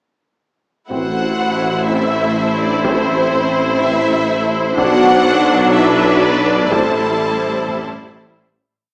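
Cinematic hybrid orchestral and electronic film score at 124 BPM in A dorian, futuristic and tense, moving from Am to Bm and Am7 as lush, vibrato-rich violin sections carry the melody with a second line doubling the tune at the octave, over smooth, up-front violas holding sustained chords. Distant, dark French horns sit in the background while tight, very quiet trombones add short accented chords. A punchy tuba, focused cellos, a clear double bass section and a menacing, saturated detuned sawtooth bass with a filter swell anchor the low end, with very quiet single taiko strokes from hard sticks, all in a wet scoring-stage reverb with a small-speaker character before a fade-out from 6.7 to 8.7 seconds.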